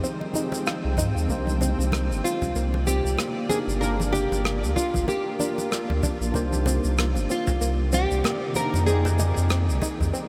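A dreamy, reverb-soaked mix opens this smooth, wistful sunset chillout excerpt in a swung 4/4, where a shimmering, ethereal ambient pad sustains chords beside a clean tine electric piano, a soft, nasal pluck plays arpeggios in the background, brushed shaker and rim click and very quiet, close congas tick along, a deep, round sub bass sits up front from 0.8 s and a tape-warm electronic kick joins at 1.0 s, before a small, fingerpicked nylon-string guitar takes the melody from 2.2 s.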